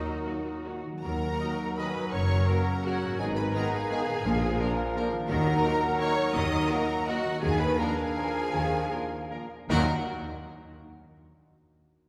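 A wet concert-hall reverb sets this sweeping, bittersweet orchestral ballroom waltz at a distance, as if heard from further back in the room, in a short cut from a longer piece. A warm, close violin section carries the melody with vibrato and expressive portamento, while a second violin section, sounding rich and distant, joins from 0.3 seconds alongside a focused viola section. Hollow flutes, a present cor anglais, a clear close-miked clarinet and a bassoon weave supporting lines in the background. Soft-edged French horns and tight trombones hold very quiet sustained chords, a brilliant trumpet adds distant stabs, and a ringing, thumb-plucked harp spins arpeggios. The low end rests on a bowed cello section, an intimate double bass section and a dark, smooth tuba. The rubato phrasing broadens as the music slows between 6.9 and 9.7 seconds, easing back to the home minor chord.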